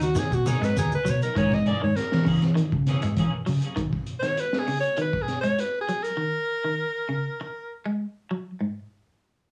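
A dry, small-room home recording on cassette carries this defiant, driving afrobeat fragment. An edgy, forceful alto saxophone solo with vibrato sits up front until 7.8 seconds, over a bright, picked electric guitar playing arpeggios, a second clean guitar adding stabs through chorus and analog delay, and a round, dark fingered bass that drops out at 3.6 seconds. A gritty, saturated breakbeat kit with a high-tuned snare and tight kick pushes beneath, while grainy shekere and low-tuned congas appear only briefly at the start.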